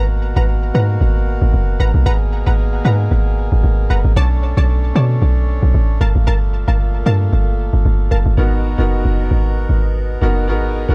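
Hypnotic and soulful, this amapiano excerpt in G# minor at 114 BPM with a 16th-note swing rides a deep, round, up-front log drum bass and a reedy, breathing pedal harmonium through G#m9, Bm9 and Gm9 chords, while punchy sawtooth chord stabs with chorus and tape echo drop out at 8.2 seconds and a clear, open concert grand piano enters at 8.4 seconds in a dark, small-room production marked by lossy compression artefacts.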